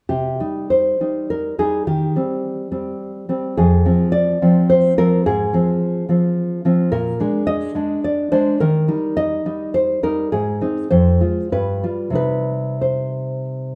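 A dark, full-bodied nylon-string guitar carries this romantic solo classical piece, played up front with a thumb-plucked, deep classical tone. The mood is melancholic yet passionate, moving in a flexible, rubato three-beat lilt that lets phrases breathe. The harmony travels from C minor through F minor and a Bb7 to a brief rest on Eb, then passes through Ab, F minor and G7 before settling back on C minor at 12.2 seconds. The guitar spans a broad range, from a low F up to a high Eb, giving the part both depth and lyrical reach. A moderate recital hall reverb surrounds the instrument with natural space in this short excerpt, which ends at 13.8 seconds as it is cut from a longer piece.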